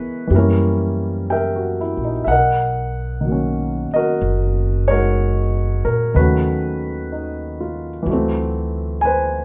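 An intimate grand piano with audible action noise sits up front, supported by a woody pizzicato upright bass on steel strings, in this tender, romantic swung jazz ballad at 62 BPM in B major, a brief passage from a longer piece captured as a live band in one room with moderate large-studio reverb.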